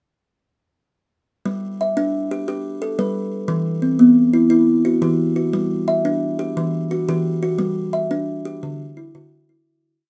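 Rippling and warm, this short southern African traditional piece in 12/8 features a solo kalimba that enters at 1.5 seconds with a woody, hollow-box tone and soft fingertip plucks, spinning an up-front interlocking mbira-style ostinato over G, Em and D harmonies in a moderate studio reverb before fading out from 7.6 seconds.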